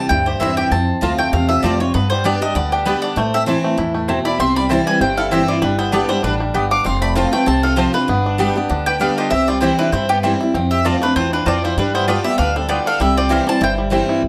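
A bright, up-front picked mandolin carries the melody from the start of this driving, virtuosic bluegrass excerpt in C major at a swung 195 BPM, over full-bodied dreadnought guitar, twangy fingerpicked banjo arpeggios, a thumpy, woody upright bass and woody mandolin stabs, while a clear, biting fiddle with light vibrato and an airy bow joins in the background at 4.2 seconds with a second line, all in a moderate studio reverb.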